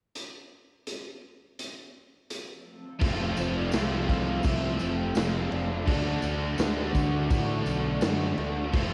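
Hazy and dreamy, this shoegaze and dream pop fragment of a longer rock piece moves at 84 BPM in a straight 4/4. A raw garage drum kit opens alone at 0.2 seconds, up front with a punchy kick, medium-tuned snare, hi-hat and crash, its dark, rolled-off sound set in a bright stone room and coloured by cassette tape. At 3.0 seconds the band arrives over an Fmaj7 chord, later moving to Dmaj7: three overdriven guitars play riffs in the background, one bright and double-tracked, one with analog chorus, and a hollow-bodied semi-hollow guitar trailing reverse reverb, all carrying a cassette tape character. Beneath them a fuzz-soaked fingered electric bass adds grit, while a soft octave-layered synth lead with a round triangle tone, sub octave, chorus and vibrato sings a melody from 3.4 to 6.9 seconds. A very quiet, warbling pad of detuned sawtooth and triangle waves drifts in with nostalgic, lo-fi chords, and a jingly tambourine sits far back in the mix. 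The whole home recording on cassette carries light reverb.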